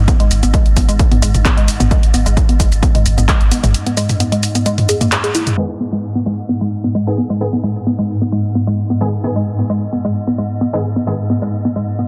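A dense, heavily limited modern master with light digital ambience frames this hypnotic, driving peak-time techno excerpt. A round sine sub bass pumps beneath an up-front, punchy kick, both falling away by 3.7 seconds, while a dry analog drum machine of handclaps, hi-hat, shaker and toms plays on through a band accent at 5.1 seconds. Throughout, a swarming, detuned drone and a woody, wave-folded pluck riff with overdrive, chorus and delay carry the groove, and from 5.6 seconds a filter sweep begins as a thick, bright sawtooth rave stab enters low in the mix, aggressive and washed in chorus, reverb and delay.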